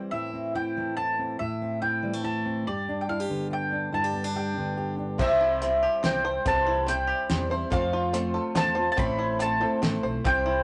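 Indie folk in 3/4, hopeful and uplifting, cut from a longer piece. A full-bodied, fingerpicked steel-string acoustic guitar with audible finger squeak opens under a round, double-stringed mandolin melody that runs throughout. At 5.2 seconds the arrangement builds as the guitar gives way to a shimmering, octave-doubled twelve-string, joined by twangy banjo arpeggios, woody pizzicato upright bass and a cloth-damped, thuddy drum kit with a fat snare and dark cymbals that stops at 10.3 seconds, all heard through a rough rehearsal-room recording with small-room reverb, warm saturation and a rolled-off top.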